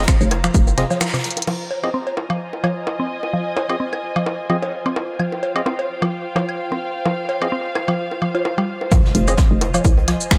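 A punchy, tape-warm electronic kick sits up front in this sparse, hypnotic minimal techno excerpt in F minor at 129 BPM, with a 16th-note swing. The kick, the hollow, bouncy FM bass and a clicky small-room drum kit with finger snaps, shaker and crash mark the opening drop and drop away within the first 1.6 seconds. The kick and click kit return with a very quiet electronic impact at 8.9 seconds, and the bass follows just after. Throughout, a woody, round mallet-like synth pluck carries the riff, shimmering with chorus and digital delay, while dark, percussive organ-like stabs drift through dub echo until about 9.3 seconds. Beneath them, a veiled, muted string section bowed con sordino adds a distant texture, pumping with the sidechain along with the bass and pluck. A layered cowbell, bongo and woodblock part with dub echo, plus a faint, roomy brush kit on hi-hat and snare, keep the groove ticking under light reverb, moving from F5 to Fm7 after a short break, band accent and drum fill.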